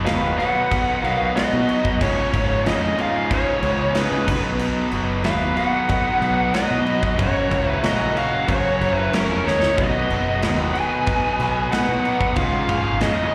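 Sunny and confident, this short excerpt of classic rock at 93 BPM sets a dark, smooth, overdriven lead guitar up front with slapback echo and plate reverb over a second lead line, three picked rhythm guitars riffing (one bright and compressed, one warm with slapback echo, one double-tracked), a growling overdriven fingered bass, a big room drum kit with punchy kick, bright cymbals and a drum fill at 9.5 seconds, plus a very quiet shouting tonewheel organ on slow rotary and a woody upright piano, all heard live through the venue's PA with club and recital-hall reverb as chords move from Cb through Dbadd9 and Gb.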